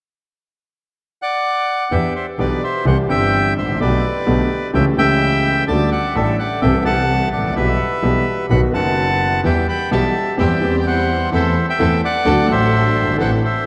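A reedy, dark bandoneon opens the fragment at 1.2 seconds, carrying a melancholic, tense tango melody in E minor at 128 BPM in 4/4, played with a rubato feel. At 1.9 seconds a clear concert grand piano with deep bass and a smooth, vintage character joins up front as accompaniment, while a single bowed double bass adds an earthy, distant low line with light vibrato. The harmony moves from Em7 through chords such as C, A7/C# and Dsus4 before settling on B. At 9.4 seconds a bowed studio string section enters in the background with rich, biting stabs full of vibrato, as the harmony passes through Em, C/E and Am/E toward D. The whole performance sits in a vast, echoing cathedral-like space with a long, wet reverb tail, and the music breaks off as part of a longer piece.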